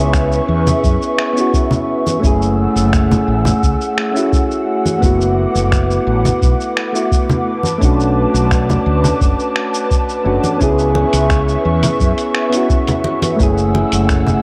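A soft, electric-piano-like synth and an airy, breathy pad open this smooth, relaxed sunset chillout excerpt in F# minor, moving at an easy 86 BPM in a straight 4/4. The keys sit up front with a gentle, rounded tone coloured by chorus, cassette tape and analog delay, while the detuned pad holds long sustained chords with a slow attack and a moving notch over its noise layer. A dark, punchy fretless bass carries the low end through tube saturation and analog chorus, and a deep electronic kick and a gritty, sampler-style kit of finger snaps, hi-hat and shaker come in at 0.1 seconds, with bright, saturated congas following at 0.7 seconds. The harmony drifts through C#m7, F#m7, D6/F# and Bm7, then returns to C#m7 and F#m7. Moderate spring reverb and the character of a home cassette recording give the whole piece a hazy, intimate feel.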